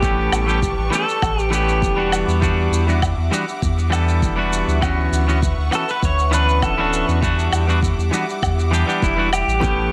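This sunset chillout excerpt moves at 100 BPM in a straight 4/4, sitting in E dorian with a relaxed, warm mood. A round, mellow sine sub bass sits up front beneath a bright, clean electric guitar whose twangy picked accompaniment carries tape echo. Further back, a rich bowed string section holds smooth sustained chords with light vibrato. The pedal steel guitar, played with fingerpicks and slide and shaped by volume swells, carries the melody in two phrases, dropping out at 2.1 seconds and returning at 5.8 seconds, with tape echo on its tone as well. A deep, layered electronic kick and a produced shaker and woodblock with dub echo keep the pulse, and congas appear briefly in the background at 9.6 seconds. The chords move from A9 to Em9, Dmaj13 and back to Em9, all within an echo-heavy mix set in a moderate echo chamber reverb.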